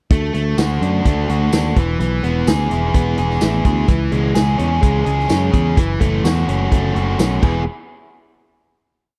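Upbeat and carefree, this short indie rock piece moves in a straight four-four feel through a chord run of D, E, C#m and F#m7 before landing back on E. A biting overdriven guitar sits up front with picked arpeggios, its tone touched by spring reverb. Beneath it, a bright, growly picked electric bass drives steady eighth notes. The vintage drum kit brings a 60s soul groove with a punchy kick, medium-tuned snare, dark cymbals, hi-hat and tambourine, its rolled-off top giving it a warm character. A drum fill at 7.4 seconds leads into a final hit at 7.7 seconds, all captured in a dry, close 1970s-style studio sound with small room ambience.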